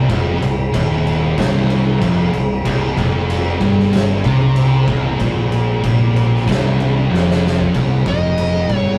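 An oversized, low-tuned drum kit sits up front with a fat snare and punchy kick in a bright stone room, driving this heavy, hypnotic stoner and doom metal passage in C minor at 94 BPM, where two dark fuzz guitars grind out a riff in the background alongside a double-tracked high-gain guitar and a growling, overdriven fingered bass, while a very quiet percussive tonewheel organ holds sustained chords through a slow rotary speaker; after a drum fill at 7.1 seconds the high-gain guitar drops out at 7.7 seconds, and a fuzz lead guitar steps forward on a high Eb at 8.1 seconds, the whole caught in a rough rehearsal-room recording with tube saturation and light reverb.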